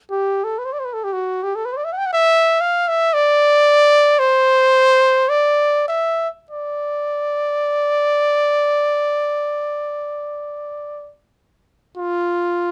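The rhythm floats freely in rubato, the pulse stretching and settling at the player's discretion, so the music feels more like speech than a steady beat. This is a classical piece for unaccompanied trumpet, lonely and mournful in mood, and this passage is cut from a longer work. The trumpet enters at 0.1 seconds and plays alone until 12.7 seconds, moving between F4 and G5 in an expressive, classical style. Its tone is warm and carries a light vibrato. Close microphones place the horn up front and capture fine detail, and the dry room adds little reverb, heightening the sense of a single voice in solitude.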